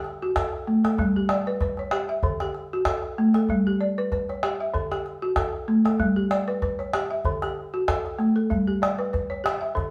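West African traditional music at 96 BPM in 4/4 with a light swing, this flowing, joyful piece sets a woody, round balafon, struck with rubber mallets, playing arpeggios up front over a steady alternation of D and G chords. A deep calabash supplies the percussion, also close and present. The band plays live together in one small space, and a moderate stone-room reverb gives the sound a natural ambience.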